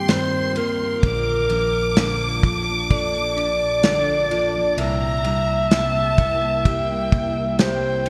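A breathy, whispered alto saxophone carries the melody of this longing, emotional pop ballad excerpt with light vibrato and a jazz-style intimacy, while a lush, expressive violin section sings a second line high above it. A bell-like, clean tine electric piano plays the accompaniment over an ethereal pad of detuned sawtooth chords with ensemble chorus and a fingerpicked dreadnought guitar, whose arpeggios carry finger squeak, analog chorus and digital delay. A smooth drum kit with a tight kick, snare and ride sits up front from 0.1 s, and the whole mix is bathed in moderate plate reverb with bright 1980s-style digital production.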